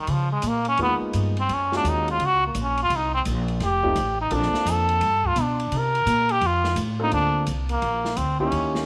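Warm and playful, this short cut from a longer small-group swing and bop jazz piece in Bb major moves at 171 BPM, with a buzzy, brilliant metal-muted trombone taking an up-front solo until 7.1 seconds over a growly, woody pizzicato upright bass, a grand piano accompanying from 0.8 seconds, and an airy acoustic drum kit with dark cymbals and a boomy kick, the group heard in light reverb with small-room ambience.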